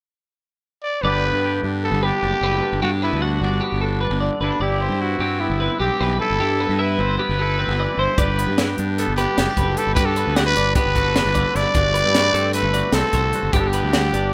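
A raspy, growling trumpet enters at 0.8 s in this intricate, playful excerpt of math rock and midwest emo, carrying an up-front melody with light vibrato and slapback echo over a brisk 9/8 pulse at 303 BPM in G major. From 1.0 s a fuzzy, overdriven fingered bass, a twangy guitar bathed in spring reverb and a bright twelve-string guitar playing chorus-soaked arpeggios join over chords moving from Gmaj7 to Cmaj7/G and later through D7/G. A crisp fusion kit with a high-tuned snare and tight kick arrives at 8.2 s, its pumping small-room sound filling out the rough home demo mix.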